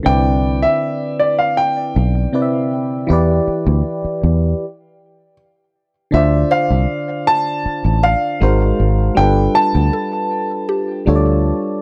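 A glassy FM electric piano with a bell-like attack and a warbling chorus opens this moody, longing contemporary R&B excerpt at 0.0 seconds, set in D dorian at a straight 79 BPM in 4/4. A natural-sounding grand piano carries the melody high in its register through a tape echo, while a round, foam-muted fingered electric bass sits dark and up front beneath the harmony of Cmaj9 and Em7. At 4.6 seconds the band breaks into a stop, and the second section picks up on Dm7, moving through G#9 to G7. From 6.5 seconds a woody, mallet-like synth pluck adds a mellow, percussive texture in the background, treated with chorus, phaser and tape echo. The whole passage sits in a digital ambience with a dry, gritty hardware character, cut from a longer piece.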